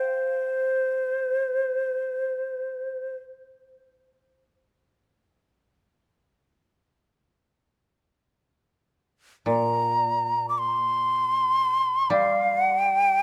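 Close, detailed microphones catch every breath in a moderate concert hall, its 2.5-second reverb trailing into the space around the players. This calm, austere piece of Japanese traditional chamber music moves in free time, cut from a longer work. A bamboo shakuhachi opens alone at 0.0 seconds, its end-blown tone breathy and bright, with vibrato, soft attacks and lifted highs placing it up front as it carries the melody between C5 and D6. It falls silent at 3.2 seconds. When it returns at 9.5 seconds, a koto joins beneath it, plucked with fingerpicks in a low range from Bb2 to G3, its acoustic voice warm, dry and woody and sitting quieter in the mix. The two play together through to the close at 13.2 seconds.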